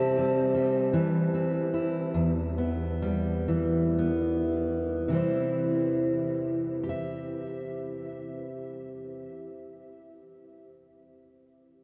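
In a slow, straight 6/8 at 34-54 BPM counted in dotted quarters, this peaceful, pastoral folk excerpt eases back in pace over its first 5.1 seconds as it moves from C to E minor at 2.1 seconds and back to C at 5.1 seconds. A single fingerpicked steel-string acoustic guitar carries it alone, full-bodied and jumbo-sized, sitting up front while ranging from E2 to E5 with a diffuse ambient delay trailing its notes. The whole mix is soaked in a huge, dreamy reverb with an 8.5-second tail, turning the brief excerpt into a hazy, floating reverie.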